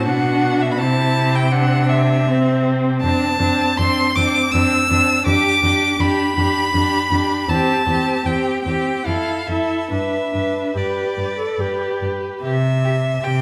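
In a moderate recital-hall reverb, this tender, slow romantic string quartet movement in 3/4 at 70-84 BPM unfolds with rubato, cut from a longer piece, as a rich, up-front first violin sings a smooth vibrato melody high above a second violin's distant, even inner line, a close, expressive viola adds accompaniment with soft attacks and portamento, and a full-bodied bowed cello anchors the bass, with the harmony settling into C major from 3.0 s.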